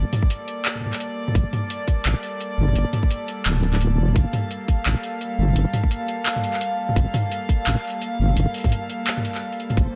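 Dark and spacious, this half-time drum and bass excerpt in G minor at 171 BPM swings its sixteenths over a Gmadd9 chord, as a deep, detuned sawtooth-and-sine wobble bass with chorus and tube saturation sits up front beside a tight, layered electronic kick and a small-room drum kit of handclaps, toms and metallic hats, while a rich, floating bowed string section holds soft sul tasto chords that pump under sidechain, all in light digital ambience, with a short break at 9.4 seconds.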